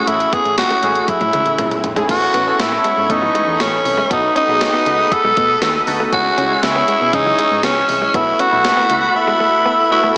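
A straight 4/4 pulse at 119 BPM drives this uplifting, glossy slice of 1980s-style pop, where a gated digital drum machine lays down a thumpy kick and gated-reverb snare, with a drum fill from 1.1 to 2.1 seconds, over a punchy, round FM bass. Up front, a breathy, raspy tenor saxophone carries the melody with vibrato, while detuned sawtooth analog keys with chorus, phaser and slapback echo supply accompaniment, and a clean, direct-recorded electric guitar plays a background riff through lush chorus. A swirling, bright phased pad enters at 2.5 seconds with sustained chords as the harmony moves from Amaj7 to B7sus4, all set in a wet hall reverb that gives a big arena sound.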